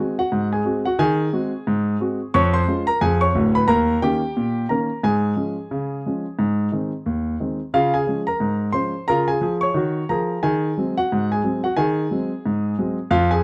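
Ragtime piano in a jaunty, lively 2/4 with a light swing, played by a solo concert grand with deep bass and short sustain, sitting up front in a dry, close 1970s-style studio sound with small room ambience across this 13.4-second cut from a longer piece.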